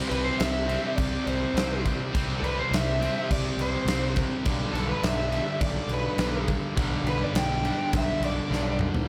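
Hard rock at 104 BPM in 4/4 with a straight, driving and aggressive feel, this short cut from a longer piece moves from C to G/B under two bright, overdriven stack guitars picking a riff in the background. A warm, overdriven lead guitar through a small cranked amp carries the melody with slapback echo, while a fuzzy, punchy picked bass anchors the low end. Up front, a huge arena drum kit with a pumping hall sound, bright cymbals and a punchy kick closes on a drum fill at 8.5 seconds, all set in light reverb and small room ambience.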